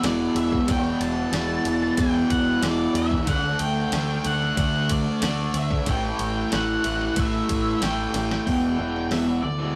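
A hazy, melancholic slice of shoegaze-leaning dream pop rock in E minor at 93 BPM opens at once with a bright, double-tracked fuzz guitar riff up front, a dark octave-fuzz lead guitar carrying the melody above it, a growling overdriven fingered bass with a punchy edge, and a detuned 8-bit drum machine with a thumpy kick and medium-tuned snare. Over chords moving from E5 through D5 and A5, the drum machine plays a fill at 8.1 seconds before the music settles onto Em7 at 8.5 seconds. The whole is soaked in moderate stone-room reverb and tube saturation, giving it a rough rehearsal-room feel.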